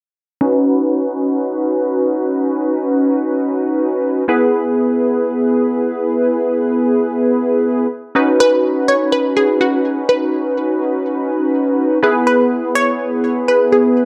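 A funky, punchy polysynth comp opens this carefree, euphoric pop excerpt in free time and B major, its detuned sawtooth-and-square tone with ring modulation sweeping through a low-pass filter and chorus over Badd9 and E chords, until a lush, detuned unison pluck carrying the melody enters at 8.4 s with a noise layer, moving notch and tape echo, all set in moderate spring reverb within a dark production.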